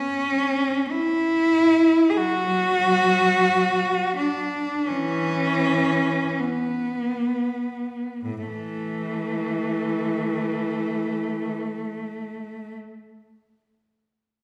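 The rhythm is free and rubato, moving loosely within a 4/4 metre at a very slow 28 to 51 BPM, and the pace slows through the first 8.2 seconds before a new section begins. This is a classical passage for unaccompanied cello in A major, taken from a longer piece, with a nostalgic, serene mood. A single bowed cello carries everything as the solo voice, ranging from A2 up to G#4 and sounding until 12.7 seconds. Its tone is rich and focused, shaded with vibrato, and it sits close and up front. Around it, a wet recital-hall reverb with a 1.5-second decay suggests a church or concert hall.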